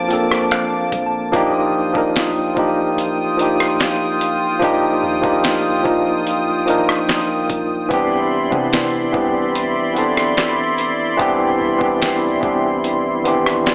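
Heard through a narrow AM-radio filter with light reverb and a digital ambience, this short excerpt of contemporary R&B feels romantic and smooth in a straight, unhurried 4/4. A worn, slightly out-of-tune tine electric piano sits up front, lightly overdriven as if through built-in speakers, and opens with a brief fill from 0.1 to 1.3 seconds before settling into accompaniment. Beside it, a vintage analog pad holds sustained chords with a soft attack, its wave-folded sawtooth-and-sine tone warbling under chorus and pumping against the beat. A dusty sampler-style drum kit, compressed and gritty as though re-recorded in a small room, comes in at 0.1 seconds with a thumpy kick, fat snare, hi-hat, rim click and finger snaps. In the background, a soft 808-style bass adds deep, round sine notes with a fast attack that then decay, while the harmony moves from Bbmaj9 to Ebmaj9 and then to Cmaj9 at 7.9 seconds.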